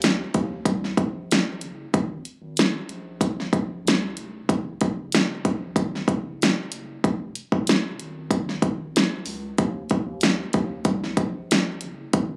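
Hazy and lonely, this short excerpt of bedroom-flavored indie pop moves at a straight 94 BPM in Eb dorian, with a round, deep analog bass holding down the low end in a dark, slightly nasal tone. An electronic, up-front pop drum kit drives it with a punchy kick, a fat snare and hi-hat. Light reverb and digital ambience surround the compressed sound, which carries a club ambience and the feel of a phone recording made in the room.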